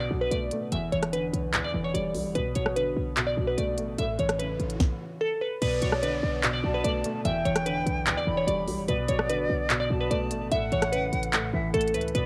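Dark and eerie, this half-time trap excerpt at 147 BPM in B minor sets a glassy, crystalline wavetable pluck melody, treated with chorus, tape echo and cassette grit, over a felt-muted upright piano whose soft, intimate tone carries audible action noise, while a punchy, tight 808-style bass and an up-front trap kit with a knocking kick, sharp snare, crisp hats, handclaps and rim clicks drive the groove. A background riser and downlifter sweep through between 3.9 and 8.9 seconds, and at 5.6 seconds an airy, close-miked concert flute with expressive vibrato enters as a second line, its tape echo adding to the lightly reverberant, home-cassette sound. The harmony cycles through Bm7, Em7 and Aadd9.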